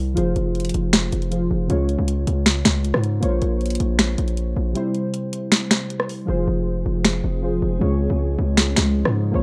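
Dark, menacing trap hip hop in a half-time feel, built on warbly, detuned lo-fi synth keys with a chorus sheen and a punchy 808-style bass with a sine body and noise layer, both sitting up front. A produced trap kit with a sharp snare, bright hats, finger snaps and rim clicks drives the cut through chords moving from Fm to Db, Bbmadd9 and C, with the kick dropping out between 4.8 and 6.3 seconds and the hi-hats falling away from 6.3 seconds. At 7.3 seconds a glassy, ethereal FM pad drifts in behind, carrying ensemble chorus, built-in reverb and phaser, all within a rough home-demo mix and digital ambience.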